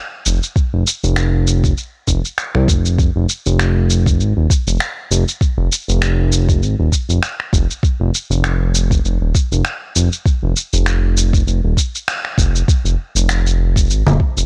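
Organic downtempo in F minor pentatonic at 99 BPM, with a lightly swung 16th-note feel and a hypnotic, earthy mood, cut from a longer piece. A smooth, gliding synth bass with a detuned sawtooth-and-square tone and portamento sits up front alongside a produced layer of electronic shaker, finger snaps and congas, both entering at 0.3 seconds, and a soft, tape-warmed electronic kick joins from 0.6 seconds. The dry, gritty cassette sound keeps every part close, and a brief band accent at 12.1 seconds leads into a short closing section at 12.7 seconds.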